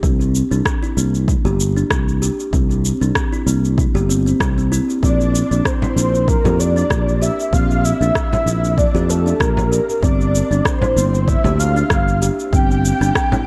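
An echo-heavy mix with light reverb gives this organic downtempo excerpt an earthy, peaceful air, set in a lightly swung 4/4. A woody, hollow-sounding kalimba plays ringing, thumb-plucked arpeggios through dub echo, placed in a boxy small room, while a growly, up-front fretless electric bass sustains beneath it. The drums pair a punchy, layered electronic kick, roughened by overdrive, with a tape-warm electronic cabasa and rim click. At 5.0 seconds a breathy, flute-like synth lead enters with a soft attack, vibrato, ensemble chorus and dub echo, carrying the melody over a sub-octave layer. At 5.8 seconds a small, bright frame drum struck with hard hands joins, its hits trailed by analog delay.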